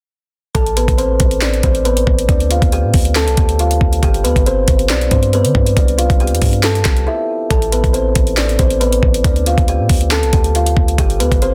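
A dense, heavily limited modern mix with light reverb and a digital ambience frames this dark, brooding trap cut in A minor, moving at 138 BPM with a half-time feel. A woody, hollow-toned kalimba carries the melody up front with ringing plucks and delay, over a deep, boomy 808-style bass with a sine body, a noise layer and a fast attack, and an electronic drum kit of knocking kick, sharp snare, handclaps and metallic hi-hats. The kit, bass and kalimba run together from 0.5 to 11.5 seconds through a cycle of Amadd9, Dm, G and Cadd9, with a brief break at 7.1 seconds before the progression returns.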